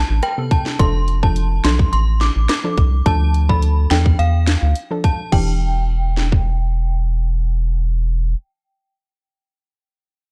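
A straight 4/4 dancehall groove at 106 BPM in E phrygian sets a sultry, bouncy mood in this short, dry, gritty cut from a longer piece, where a deep, up-front round analog bass holds the low end while a tight island pop drum kit with sharp snare, crash, hi-hat, rim click and sampler grit plays from 0.2 to 6.4 seconds, a mellow soft round pluck with chorus comps through chords from Amadd9 to Em7, and a chiming, warbling FM synth chime with ensemble chorus and tape echo carries the melody until 7.0 seconds.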